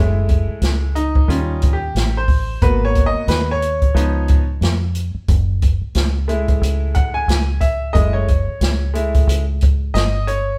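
Nocturnal and smoky, this jazz-hop excerpt cut from a longer hip hop piece sets a bright, woody upright piano up front, soloing across its full length over a chord cycle that opens on F#m9 and returns to it at 5.3 seconds, with audible action noise giving it an intimate feel. Beneath it, a deep, foam-muted fingered electric bass sounds dark and round, while an open acoustic jazz kit joins at 0.3 seconds with hi-hat, a medium-tuned snare and a boomy kick, natural and forward in a small room. The swung sixteenths and light reverb convey a band playing live together in one space.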